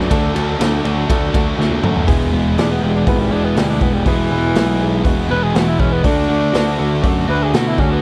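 Confident and driving, this short classic rock excerpt moves in a straight 4/4 with a raw, dry sound. A raw garage drum kit sits up front, its punchy kick, medium-tuned snare, hi-hat, ride and toms saturated and gritty in a small, pumping room, and a drum fill at 1.6 seconds leads into the next section. Beneath it, a fuzz-driven picked electric bass gives a dark, round low end, while two distorted guitars play riffs: a sludgy overdriven one sitting in the background and a tight, bright one. A woody, brilliant upright piano adds very quiet accompaniment. After the chords move from D to E at 2.1 seconds, a raspy tenor saxophone takes a solo from 2.6 seconds with vibrato, clear and gritty with a smooth top, touched by slapback echo, and the harmony returns to D at 6.0 seconds.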